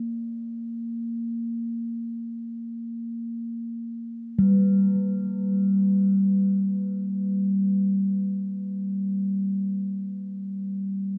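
This is world meditative music in free time, a short excerpt lasting 11.2 seconds from a longer piece, set in G minor with tuning at A4 = 438 Hz. A single bronze singing bowl plays alone throughout, sounding between G3 and Bb3 and sitting up front in the mix. Its ringing, metallic tone is dark and smooth, shaped by a suede striker, and a slow beating pulses within its ringing sound. A delay on the bowl adds repeats, while a wet cathedral reverb with a 5.2-second decay surrounds it in a vast, spacious room. The overall sound has a softened top end, keeping the mood meditative and spacious.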